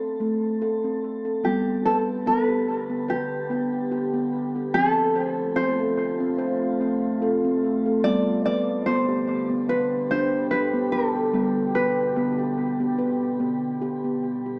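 Set at a slow 73 BPM in 4/4 with a slight swing on the sixteenths, this gentle, meditative world excerpt opens with a round, ringing steel tongue drum playing arpeggios under rubber mallets, alone until a dark, full-bodied nylon-string guitar enters at 1.4 seconds with a thumb-plucked melody. A deep, detuned sawtooth pad with a sub octave and slow attack settles in at 2.5 seconds, after the opening A minor has given way to G, sustaining moody chords as the harmony moves on to F and back to G. Drum and guitar sit up front, bathed in shimmer reverb and tape echo, while the whole echo-heavy mix carries a wet spring reverb, small room ambience and a small-speaker sound.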